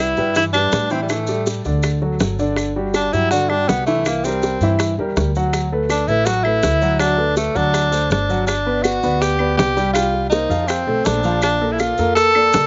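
Lively and sunny, this brisk Afro-Cuban jazz excerpt at 163 BPM in D major puts a bright, breathy tenor saxophone up front, singing a vibrato-laden solo melody with scooped notes and a slapback echo over warm grand piano chords, a woody pizzicato upright bass, tight high-tuned bongos played with soft hands, distant grainy maracas and background claves, moving from Cmaj9 through D7 before shifting at 8.5 seconds to Gmaj7, Cm7, F and Bbmaj7, all in a dry, dark outdoor sound.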